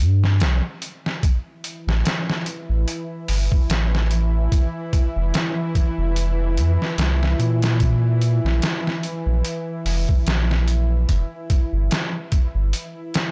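A slow, swung 4/4 groove at 73 BPM anchors this hypnotic, cinematic trip hop fragment, cut from a longer piece, with a sampler-style kit of hi-hat, thumpy kick and medium-tuned snare sounding gritty, compressed and pitched down, with a tape-like coloring, placed up front. A deep, round sub bass with a sine-like tone and fast attack sits equally forward, holding sustained notes beneath a chord movement from G through A5, F5 and Bb5 to Em/G. From 1.7 seconds a tense, string-like drone fades in with a slow attack, its bright sawtooth and triangle layers wave-folded over a noise layer, carrying vibrato, its own reverb and a long release, tucked well beneath the rhythm. The room itself is dry, while the whole recording is blown-out and overdriven, giving the fragment a saturated, crushed edge. The bass drops away at 12.7 seconds for a brief break, leaving the drums and drone to carry the final moment.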